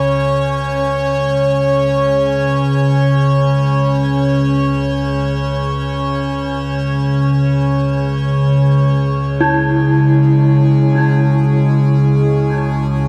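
A bright, ringing bronze metallophone with shimmering paired-tuning beats enters at 9.4 seconds, its airy arpeggios trailed by diffuse ambient delay, in this unsettling, desolate dark ambient drone cut from a longer piece. Beneath it, an up-front, calm organ-like drone of detuned sine and triangle tones with ring modulation, a moving notch and ensemble chorus sustains in the low register. An eerie, inharmonic FM and sawtooth drone with its own ring modulation and chorus hovers above it, both drones swelling in slowly and releasing long, while the synth drone fades in and out and a dreamy cathedral reverb soaks the whole mix.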